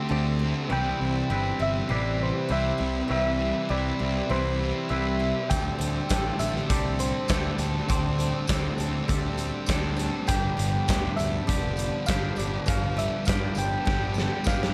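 A light, small-room reverb frames this dreamy, wistful shoegaze and dream pop excerpt in C major at 100 BPM, moving through D7sus4, Cmaj7 and G7. A round, gentle FM synth lead with chorus, vibrato and analog delay carries the melody over a very quiet, shimmering, octave-doubled twelve-string acoustic guitar playing bright arpeggios, a dark, thick fuzz guitar riff with analog chorus, a clean, compressed, twangy electric guitar riff bathed in reverse reverb, and an overdriven fuzz bass that enters at 0.1 seconds. At 5.5 seconds a big, punchy rock kit with a fat snare arrives up front alongside a faint, jingly vintage tambourine, and a drum fill closes the passage from 13.9 seconds.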